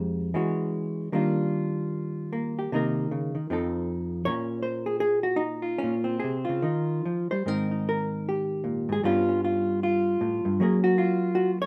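A lone electric hollow-body jazz guitar opens this smoky, moody solo jazz excerpt, its clean, dark tone fingered and placed up front in a room with light reverb. The tempo sits around 153 BPM in 4/4, with a swung eighth-note feel loosened by rubato, and the tuning rests slightly below standard at A4 = 438 Hz. The guitar spans from F2 up to Db5, voicing rich extended chords such as Ebmaj9, Cm7, F7 and Bbmadd9 through the opening passage. At 7.4 s a second passage begins, moving through Abmaj9 and G7#11 before settling on Gbmaj9. The fragment, cut from a longer performance, ends at 11.7 s.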